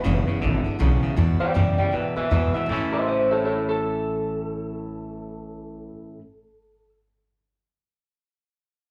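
Rockabilly at 159 BPM in 4/4 with a swung eighth-note feel, this rowdy, upbeat clip in A major is cut from a longer piece and heard as a live gig through the venue's PA, wrapped in club reverb. Up front, an electric guitar through a small old amp carries the melody from A4 to G5, its slightly broken-up, twangy tone treated with slapback and tape echo, playing until 6.9 s. Beneath it, a second twangy electric guitar plays a bright, clean riff with its own slapback echo, while a picked steel-string acoustic guitar fills in full-bodied dreadnought accompaniment. An upright bass with gut strings gives a woody, thumpy pizzicato low end between F#1 and G#2, entering at 0.1 s and stopping at 5.9 s. The harmony sits on E before moving to A at 2.7 s, where a new section begins.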